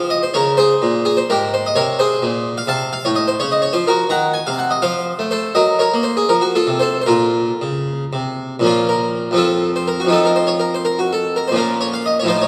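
A solo Flemish-style harpsichord, plucked and full-bodied on two sets of strings and placed up front, plays a grave, introspective baroque suite movement in a flexible, rubato 6/8 that turns to a new section at 8.6 seconds, all cut from a longer piece and heard through a wet church reverb with lossy compression artefacts.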